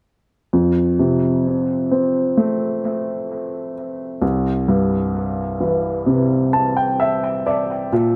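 Emotional and hopeful, this short pop excerpt moves at a slow 65 BPM in a straight 4/4, set in F major. A single baby grand piano carries the whole accompaniment from 0.5 to 8.2 seconds, spanning a broad register from C2 up to A5. Its tone is warm, present and polished, with a short sustain and a placement up front in the mix. A dub echo on the piano repeats its notes, and a moderate spring reverb adds to an echo-heavy sound. The harmony rests on F before shifting to C at 4.2 seconds, and a piano fill at 6.1 seconds leads toward the close of this fragment of a longer piece.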